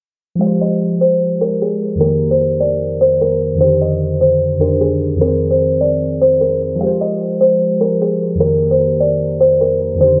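Light reverb and a low-pass filter give this half-time hip hop excerpt a dim, muffled sound and a melancholic, eerie mood. Up front, a woody, hollow kalimba carries the short plucked melody from 0.4 to 10.2 seconds. Beneath it, muted, felt-like synth keys with chorus, detuned tones, a noise layer, ring modulation and a filter sweep add dark, intimate accompaniment over minor and slash chords.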